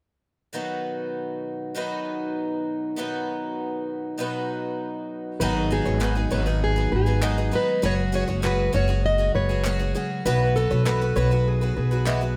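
A straight 4/4 groove at 99 BPM carries this carefree, sunny acoustic pop excerpt in B major, opening with a bright, shimmering twelve-string acoustic guitar picking the accompaniment up front on its own. At 5.4 seconds the harmony moves through G#m7, F#sus2 and Bsus4 as a woody, thumpy pizzicato upright bass enters, joined in the background by a soft, flute-like tonewheel organ with key click and slow rotary speaker and small nylon-string guitar arpeggios. A dark, full-bodied plugged-in steel-string guitar carries the fingerpicked melody with slapback echo, while crisp, close group handclaps add percussion, all set in light reverb.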